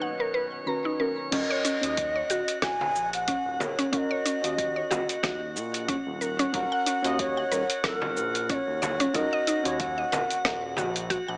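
A lightly swung 4/4 groove arrives at 1.3 seconds: a gritty, overdriven sampler-style drum kit with crash, hi-hat, rim click and shaker sits up front. Beneath it are a tape-warm electronic kick in the background and a smooth sawtooth synth bass, and a bright, hard-handed frame drum joins at 2.8 seconds. Before that, this meditative, hypnotic organic downtempo excerpt opens on a tense, string-like bowed drone and a filter sweep on a woody, round mallet-like synth pluck that carries on with arpeggios, while a breathy, hollow ney sings the melody with vibrato over soft, dark chord stabs pumping under sidechain and a glassy texture of drifting overtones, the whole mix heard through light reverb with a small-speaker sound.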